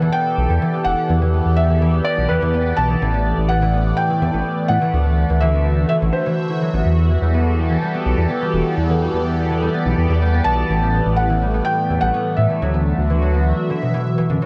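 Worn, warbling cassette tape with pitch drift and light studio reverb colours this glitchy, intricate IDM excerpt in E minor at 125 BPM, tuned slightly flat. A felt-muted upright piano carries a soft, intimate melody with audible action noise, 12-bit sampler grit and tape echo, pausing at 6.6 seconds and returning at 10.4 seconds, while a fingerpicked concert harp rings out delayed arpeggios. Beneath them a swirling, phased and chorused analog pad holds slow-blooming chords from Em11 through A9sus4 and D9, and a dark, detuned saw bass sits up front with a deep, rumbling, saturated tone.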